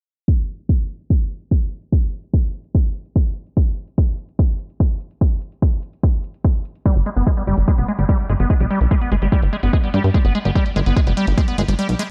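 Lightly reverberant and filtered, this alien, intense psychedelic trance cut opens on a heavy, layered electronic kick up front, with electronic hi-hats sitting far back in the mix and a filter sweep running across the drums. At 6.9 s a squelchy, resonant liquid acid bass riff arrives with chorus, delay and sidechain pumping, joined by a punchy, wave-folded plucky analog bass, before the kick drops out at 11.8 s.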